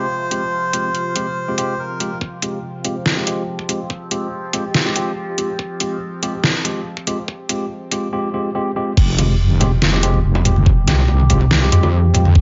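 Dark and heavy, this half-time deep dubstep cut in F minor at 142 BPM opens on a reedy, breathy melodica phrase with dub echo, over a slowly shifting drone of resonant, wave-folded overtones and clean electric piano stabs sent through dub echo and a low-pass filter. From 2.2 seconds a knocking electronic kick joins the up-front kit of deep snare, metallic hats and crash, while a filter sweep on the electric piano builds tension. The drop at 9.0 seconds brings in a saturated, detuned wobble bass with chorus, plus hard-handed bongos and congas in the background of a lightly reverberant, dark-toned mix.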